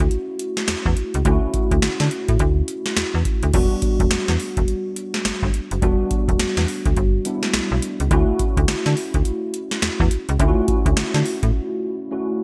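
Punchy and confident, this new jack swing R&B excerpt moves at 105 BPM with a swung 16th-note feel in E dorian: a booming analog drum machine with a deep kick, crisp snare, metallic hats and gated reverb sits up front beside a snappy, slap-like FM bass and a worn, slightly out-of-tune tine electric piano with light overdrive and analog chorus, all moving from Dmaj7 to Em9 and back to Dmaj7 in a bright 1980s-style digital production with lush hall reverb, until the bass stops at 11.5 s and the drums at 11.6 s, leaving the electric piano alone until 12.4 s.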